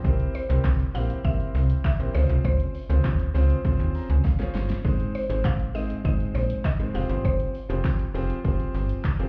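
Dance-pop with a driving, energetic drive, this short clip from a longer piece sounds as if it's heard muffled through a wall, carried by a club reverb. A deep house drum kit sits up front with a punchy kick, fat snare, handclaps, hi-hat and shaker, all overdriven and layered, while a very quiet, jingly tambourine stays close and dry in the background. A snappy slap-like FM bass with a metallic attack pumps with sidechain, as does a clear concert grand piano that adds smooth, vintage-toned accompaniment over chords moving from C7 to Dbmaj7, Ab and Fmadd9. From 0.3 seconds a woody, round mallet-like synth pluck carries the melody, thickened by chorus and tape echo. The piano plays a fill from 3.6 seconds, and the drums add one of their own at 4.2 seconds, both wrapping up at 4.8 seconds.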